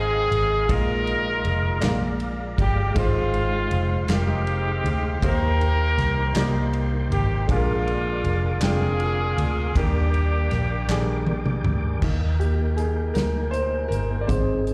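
A dark, tight horn section carries the melody up front with a light vibrato and a slapback echo, giving this slow gospel excerpt a soulful, jubilant lift in 6/8 at 53 BPM in Eb major. Beneath it, a woody upright piano with long sustain supplies the accompaniment, while a tonewheel organ holds sustained chords in the background, lightly overdriven with key click, chorus vibrato and a slow rotary speaker. A dark, round, foam-muted electric bass sits punchy and up front, and an acoustic soul drum kit with a tight kick, medium-tuned snare and rolled-off top enters at 0.3 seconds. Crisp, compressed group handclaps join in the background from 1.8 seconds. The harmony moves from Fm7 through Bb7, Ab6 and Eb6 to Ebmaj7, and after a drum fill the horns drop out and the piano takes a short solo over an Eb chord from 12.0 seconds. The performance sounds like a live gig heard through the venue's PA, with a recital-hall reverb around it.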